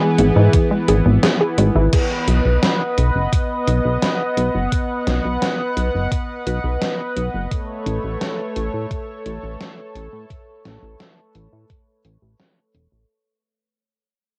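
This moody, driving synthwave excerpt has the hazy, slightly worn sound of a home cassette recording, set in a modest booth ambience. A smooth, vibrato-touched synth lead sings a brief melody on G#4 for the first 1.2 seconds, while a punchy, detuned unison pluck sketches arpeggios in the background until 1.9 seconds. Underneath, a lush, thick pad of detuned saws holds sustained chords across the whole span, bright and pumping against the beat, moving from E/G# to B and later to Aadd9. A glossy, tube-saturated synth bass carries the low end up front, joined by an overdriven, thumpy electronic kick and an 80s-style digital drum machine whose snare blooms with gated reverb beside filtered hi-hats and crash. The kick drops out briefly between 1.2 and 1.9 seconds, and from there the music fades out as the pad, bass and drums carry on.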